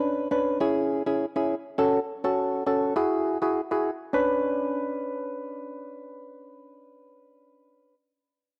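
Dancehall at 102 BPM in B dorian, with a tough, bouncy swing on the sixteenths, cut from a longer piece. A single percussive organ stab carries the accompaniment from 0.0 to 8.0 seconds, its hollow, nasal tone sitting dark and up front with a fast attack, decaying notes and a chorus shimmer, moving through Bmadd9, C#m, F#m and Eadd9 before returning to Bmadd9 at 4.1 seconds. The mix is dark and warm, with light reverb and a small-room ambience.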